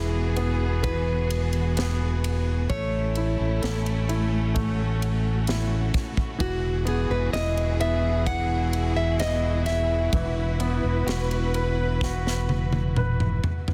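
Fingerpicked nylon-string guitar carries a heartfelt, hopeful melody in this slow 64 BPM E major pop ballad, over clear baby grand piano, lush bowed symphonic strings with vibrato and an up-front fingered electric bass moving through Eadd9, A and Esus2, while a studio drum kit with punchy kick and bright cymbals enters at 0.4 seconds and closes with a fill from 12.0 seconds, the whole set in light small-room reverb under a dense, heavily limited modern master.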